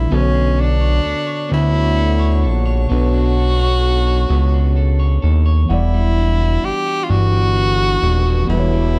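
A slow, straight six-eight sway carries this sultry, yearning R&B fragment, cut from a longer piece and moving from Bm9 to Em9 at 5.7 seconds. Up front, a breathy tenor saxophone carries the melody in a jazz style, its subtone, light vibrato and scooped notes giving it a punchy yet intimate voice. Beneath it, a fat, detuned analog bass with a sawtooth edge and a filter pluck sits heavy and sustained, its tone evolving as it holds the low end. In the background, a reedy, mellow electric piano plays clean accompaniment through its built-in speakers with spring reverb, while a compressed, picked electric guitar at the edge of break-up adds a second line. From 1.5 seconds, a tight horn section with vibrato adds pop-style stabs washed in tape echo, all within a dark, warm production under light reverb.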